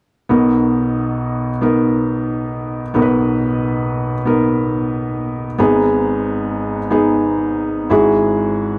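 A soft, intimate sound with moderate studio reverb frames this short pop excerpt, where an up-front felt-muted upright piano, mellow and vintage in tone, carries an uplifting, anthemic accompaniment in a straight 4/4 feel, moving from Bmaj7 to G#m at 5.6 seconds and on to Eadd9/G# at 7.9 seconds.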